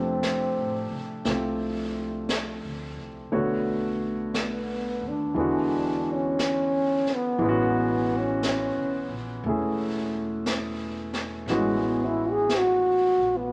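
A dark, close-miked trombone with light vibrato takes a punchy, forceful solo up front in this romantic, intimate swung jazz ballad excerpt, carried by a warm concert grand piano with deep bass, a woody pizzicato upright bass and a high-tuned snare on the brushed kit that enters at 0.2 seconds, all set in a moderate large studio reverb as the chords move from F69 through Bm7 and E9 to Amaj13.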